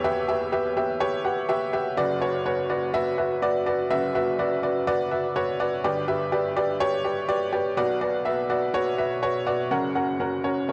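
A solo upright piano opens this short cut from a longer pop piece, sounding bright, woody and slightly detuned, with audible action noise that keeps it intimate and up front. At 124 BPM in a straight 4/4 feel, the playing in B minor carries an earnest, dramatic mood, reaching from F#1 up to G5. The harmony moves from Em to Bm/F#, then through G and back to Bm before shifting to F# at 9.7 seconds, where a new section briefly begins. The worn character of the instrument is colored by cassette tape and tape echo, giving it the feel of a home recording. A moderate, lush hall reverb with a 2.2-second decay surrounds the piano and lends it a sense of space until the passage ends at 10.7 seconds.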